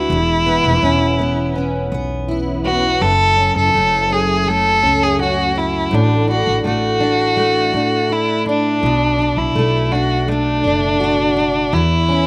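Carefree and sunny, this dry, outdoor-recorded acoustic pop excerpt features a rich, focused bowed violin carrying the melody with vibrato, up front over a fingerpicked, double-tracked steel-string acoustic guitar, while a woody, growly pizzicato upright bass anchors chords moving from E5 through F#m, Dadd9/A and Bm7 back to E5.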